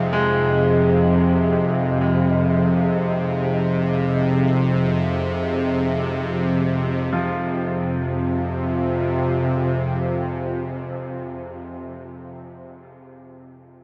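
A vast, echoing space and the soft haze of cassette tape surround this desolate, dark ambient drone in F minor, heard as a fragment cut from a longer piece and moving in free time. A deep, moody pad with a sub-octave weight and chorus holds sustained chords, its slow attacks and long releases blurring an Fm7 into a plain Fm at 7.1 seconds. Beneath it, a bowed-like drone sits low yet up front, string-like and nasal, with a tense, evolving edge, a noise layer and a touch of vibrato. Far in the background, a brilliant concert grand piano traces quiet arpeggios through a delay, its open tone glinting against the murk. The pad ends at 12.2 seconds, and the piano carries on alone until 13.8 seconds, its echoes hanging in the huge reverb.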